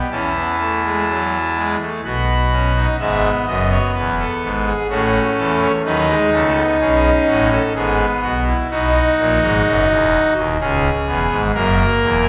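A wet scoring-stage reverb with a 1.6-second decay surrounds this recording, which is heard from further back in the room, yet the organ's trumpet stop still sounds up front, brassy and bright. It is a joyful, lively baroque-style four-part fugue in E major at 63 BPM in a straight 3/4, tuned to A4 = 441 Hz and cut from a longer piece. The pipe organ plays solo from 0.0 to 12.3 seconds in a romantic voicing that spans C#1 to B5. An opening passage on a rootless Bsus4 over E settles onto B, and at 3.0 seconds a new section begins on E. From there the harmony moves through F#m7 over A, B7, E over G# and B, then closes on C#m7 and F#7.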